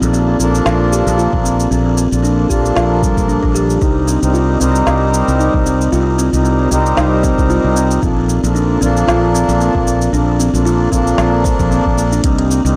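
A dry, gritty hardware recording with a digital ambience frames this earthy, mystical organic downtempo excerpt, where a reedy, breathing pedal harmonium with analog delay and a round, dark fretless electric bass, both pumping from sidechain, sit up front under a buzzing, hollow-bodied kalimba arpeggio roughened by 12-bit sampler grit, low-pass filtering and delay, while an overdriven electronic kit with a woody snare, smooth hats and shaker swings lightly and a soft, overdriven electronic kick joins at 1.3 seconds over chords alternating between Bbmaj7 and Cm7.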